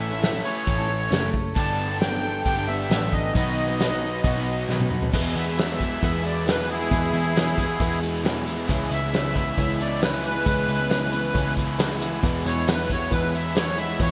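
A sweet, reedy accordion with light tremolo tuning and digital delay carries the melody and takes a solo from 5.1 s in this open-road folk rock and heartland rock excerpt, backed by up-front acoustic drums with a fat snare, punchy kick, dark cymbals and gated reverb, a round, foam-muted electric bass, a crunchy double-tracked overdriven guitar riff, a full-bodied jumbo acoustic guitar in the background, a woody, slightly detuned upright piano entering very quietly at 5.1 s, and a grainy egg shaker joining at 12.2 s, set in brilliant 1980s-style digital production with a lush hall reverb.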